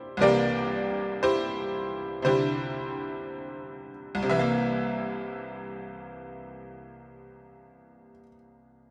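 Swinging and playful, this short cut from a longer solo jazz piece moves at a slow 59 BPM in 4/4, with swung eighths in C mixolydian over a C7 chord. A lone tack piano carries everything from 0.0 to 8.9 s, spanning C2 to E5 with a jangly, metallic, vintage tone placed up front in light reverb. A second passage begins at 4.3 s.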